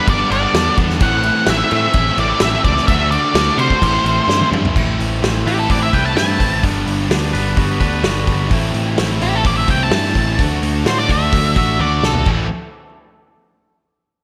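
This quiet-loud alternative rock passage, cut from a longer piece, moves at a steady straight pulse with an angsty, brooding mood. Out front, an octave-fuzz lead guitar with a dark, distorted tone carries the melody and takes a solo from 4.8 seconds, backed by two background riff guitars: one fuzzy, compressed and bright with a slapback echo, the other tight and distorted. A growly, picked electric bass and a loose, roomy indie drum kit with dark cymbals, a medium-tuned snare and a punchy kick anchor the groove, with drum fills marking the turns into new sections. A clean, twangy electric guitar adds arpeggios only between 4.8 and 8.5 seconds. Chords shift through G, Am and D, then Amadd9 and Gmaj7 under the solo, before landing on an A5 power chord, all set in a lush hall reverb that gives the mix a big arena feel.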